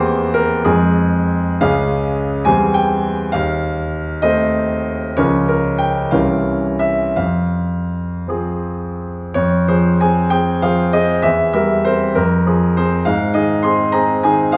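A bright concert grand piano opens the recording alone on a dominant chord over its bass before settling into a minor home chord, setting up a passionate, romantic character piece in the classical tradition. The music sways in a lilting compound metre with free rubato, its pulse stretching and easing as the phrases unfold. Sitting up front in a recital hall with a generous reverb tail, the piano sounds brilliant and open, with deep bass and long sustain spanning from low register to high treble. The opening passage moves through rich harmonies, including a tense altered dominant near 6.1 seconds, before a contrasting section arrives at 9.4 seconds. That new passage returns to the dominant and the minor home chord, then turns toward a major chord at 13.1 seconds as this short excerpt, cut from a longer piece, comes to an end.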